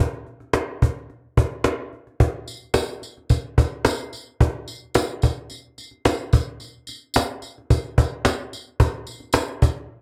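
Sunny and easy-going, this short pop passage moves at 109 BPM in a straight 4/4, with a snappy, up-front acoustic cajon carrying the beat from the start. The cajon's snares and live-room character give it bite, and a jingly tambourine, close and dry, joins at 2.5 seconds. The sound has the intimate feel of a dry, close 1970s-style studio recording with moderate booth ambience.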